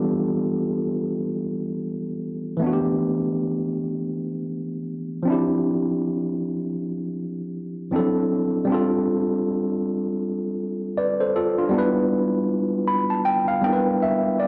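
A worn, cassette-recorded sound with a short, wet booth ambience frames this smooth, sultry R&B excerpt at 79 BPM in D dorian, swung on the sixteenths. A solo tine electric piano sits up front, slightly out of tune and lightly overdriven through built-in speakers, moving through chords from Em7 and A9sus4 to Dm11, D9 and G9sus4 across a range from E3 to B5. It closes with a fill from 12.5 to 14.5 seconds after the harmony returns to Em7.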